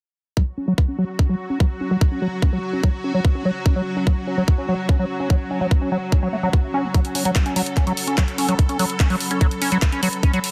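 Alien and driving, this psychedelic trance excerpt runs at 146 BPM in F# minor, built on a tight, up-front electronic kick and a squelchy, resonant acid bass riff that carries a filter sweep, tape character and delay, with both pad layers and the bass pumping against the kick. An evolving, detuned wavetable pad sustains bright chords through ensemble chorus and 12-bit sampler grit, while a deep, warbling ambient pad enters at 2.7 seconds and sits moody and dark in the background. A layered garage kit of handclaps and hi-hat joins at 6.9 seconds, all within light digital ambience and a dense, heavily limited master.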